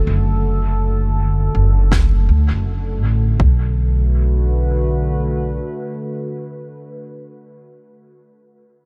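Spacious and hazy, this short ambient dub fragment, cut from a longer piece, rests on a warbling, detuned tape-like pad whose slow-attack Bm7 chords drift through chorus, phaser and built-in reverb. Beneath it, a woody, thumpy pizzicato upright bass sits up front, and a deep, overdriven electronic kick enters at 1.9 s alongside a brief, faint brushed snare from a high-tuned drum trailing dub echo. The production is dark, warm and dry, while the pad lends a nostalgic lo-fi mellowness.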